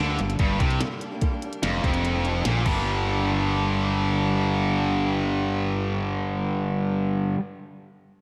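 A straight 4/4 pulse at 146 BPM drives this brooding classic rock passage in G minor, tuned to A4 = 435 Hz, where a tight, bright, double-tracked distorted guitar riff sits up front over a round, punchy fuzz bass and a very quiet, boxy old ladder-braced acoustic guitar, while a minimal electronic drum kit with a soft kick, tiny snare, clicky hats and crash plays only from 0.2 to 2.8 seconds, all set in a lush hall reverb that gives a big arena sound.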